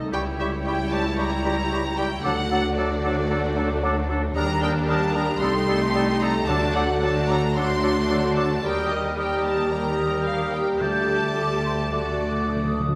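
Classical, stormy and restless, this fast romantic orchestral passage at 112 BPM sets a warm, lightly vibrato violin melody over clear background violins and intense violas, mellow sustained French horn chords, rich bowed cellos and double basses on the bass, airy flutes, a soft-attack oboe, a very quiet clarinet and a mellow bassoon, with hard-mallet timpani striking first at 2.2 seconds and closing with a fill from 11.9 seconds, all inside a wet concert hall reverb as the harmony moves from C#dim7 through Ebmaj7 toward D.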